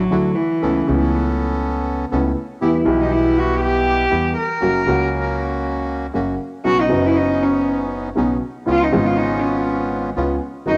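A rich, bowed cello plays sul tasto in a floating solo from the first moment of this tense, passionate rubato tango fragment, joined throughout by an intimate upright piano with audible action noise, reedy close-miked bandoneon stabs and a woody pizzicato upright bass, with the cello, piano and bandoneon carrying a cassette-tape color and a lush hall reverb surrounding the home-recorded sound.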